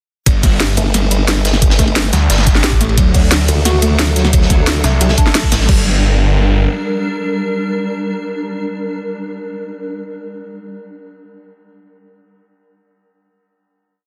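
A straight four-beat drum and bass groove drives this short, dark technical piece, with an overdriven electronic kick knocking out a broken-beat pattern alongside a tight, layered kit of cracking snares, bright closed hats, shaker and crash. Beneath them sits a crunchy acoustic breakbeat loop with edits, set back in the mix with dark cymbals, a medium-tuned snare and a gritty, rolled-off top. The mood is aggressive and tense: a snarling, detuned sawtooth bass growls up front in chopped phrases with heavy distortion and sidechain pumping, while a formant-filtered wobble bass in the same low register adds saturated, chorused modulation. A soft, round pluck loops a six-step arpeggio that drifts against the bar, colored by tape echo and a subtle chorus. From 3.6 seconds a swarming, granular drone rises on a slow attack and carries the closing G minor chord after the drop ends at 5.7 seconds, all within light digital ambience and a dense, heavily limited master.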